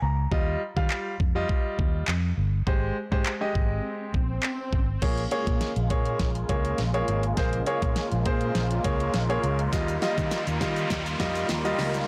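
A brief grand piano fill opens this driving, confident dance-pop excerpt at 102 BPM in Bb dorian, with a round, foam-muted electric bass entering alongside the bright, polished piano, both breathing with sidechain pumping. A pop drum kit arrives at 0.3 seconds with a knocking kick, fat snare, metallic hi-hats, handclaps and crash cymbal, its layered, tape-warm sound sitting up front. The chords move from Ebadd9 to Abmaj7, while a background swell begins at 3.6 seconds and leads into a build-up over Bbm7, where a drum fill, riser and filter sweep take hold. A detuned sawtooth supersaw swell, evolving and sustained with a sub octave, joins with pumping chords as the tension mounts, and a grainy egg shaker slips in quietly near the end as the harmony returns to Ebadd9. The whole recording is blown-out and overdriven, with a high-pass filter and light reverb giving it a pushed, crunchy sheen.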